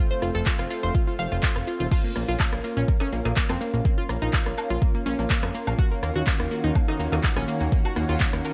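A straight 4/4 pulse at 124 BPM drives this progressive house excerpt, with a deep, up-front electronic kick entering at 0.5 s beneath a smooth-hatted deep house kit of crash cymbal, handclaps, hi-hat, rim click and shaker. From 1.9 s, ringing woodblock, cowbell and soft-handed congas sit close yet in the background, pumping with the sidechain. A fat, detuned sawtooth bass with a filter sweep and fast, decaying attack sits up front, also breathing with the sidechain, while a round analog pluck with a noise layer spins arpeggios through chorus, cassette tape colour and delay. Throughout, a lush unison pad of detuned sawtooth and square waves swells in slowly with a warbling, vintage character and a long release, holding sustained chords. The harmony moves from F to Bbm and then Ebm7 in Bb harmonic minor, giving the driving groove a bittersweet cast inside a digital ambience.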